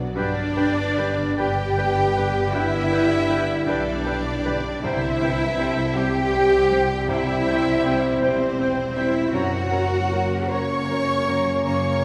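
A rich, lush cello section leads the sound in this hopeful, moving cinematic film-score excerpt for orchestra, its close, smooth bowing carrying the bass alongside a dark, expressive chamber double bass section. Set in G major at a slow, rubato 53 BPM in 6/8, the passage moves through G, C and F# chords. A violin section with a soft attack sings the melody, while a smooth, even second violin section and a clear, focused viola section bow vibrato-rich supporting lines. Above them, an airy flute ensemble, a close-miked oboe in the background and a distant, roomy clarinet add gentle second lines, and a French horn section holds sustained chords from afar. A felt-muted upright piano with mellow, intimate tone and audible action noise sits in the background, and a concert harp rings softly with fingerpicked arpeggios. A church reverb with a 3.6-second decay bathes the orchestra in a spacious, resonant hall sound.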